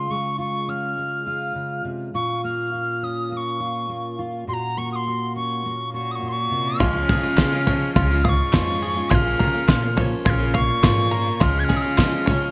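A straight 4/4 pulse carries this anthemic indie folk passage, cut from a longer piece, whose arrangement builds as it goes. A wooden whistle leads the melody throughout, pure and chiffy with a crisp attack and vibrato, sounding unsteady and distant yet up front, over a full-bodied, warm fingerpicked jumbo steel-string guitar touched with analog chorus. A clear, intense cello adds a bowed second line with an airy bow from 5.9 seconds. At 6.8 seconds a picked steel-string guitar takes over the accompaniment, while a twangy, percussive bluegrass banjo plays arpeggios, a woody, dark pizzicato upright bass fills the low end, and a cloth-damped drum kit thuds in with a fat snare, a tight kick and gritty, muffled, lo-fi saturation; a close, dry, hollow group handclap joins shortly after. Moderate plate reverb and a bright 1980s-style digital production frame the whole.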